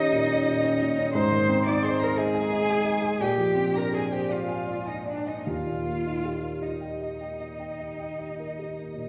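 A clear, focused violin sings the melody high above the ensemble, its bowed line shaded with vibrato and placed close to the listener. This is a slow, tender romantic movement for piano trio in Eb major, a brief fragment cut from a longer piece. It moves in a rubato 12/8 at roughly 50-60 dotted-quarter beats per minute. Beneath the violin, a single bowed cello carries a vibrato-rich second line that sits up front in the mix. A dark, mellow baby grand piano with a worn character and long sustain supplies the accompaniment from low in the bass to the upper middle register, its harmony passing from Eb7 through Ab and Bb9 before settling back on Eb. All three players sound together from 0.0 to 9.1 seconds, heard from further back in a wet recital hall whose reverb gives the performance a warm glow.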